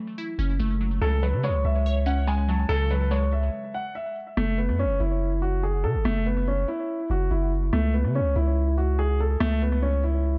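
Drill-style hip hop at 143 BPM with a half-time feel in F# minor, this tense, ominous passage cut from a longer piece opens on a glassy, detuned wavetable pluck carrying chorus, low-pass filtering and tape echo, which plays until 4.2 seconds. A deep, long-sustained 808-style bass enters at 0.4 seconds and sits up front, while a dark, mellow baby grand piano takes the melody from 1.0 seconds through low-pass filtering and tape echo. The chords move from F#m7 to C#sus4, then to F#5 and C#5 in the second section starting at 4.4 seconds, all within an echo-heavy mix with light small-room reverb.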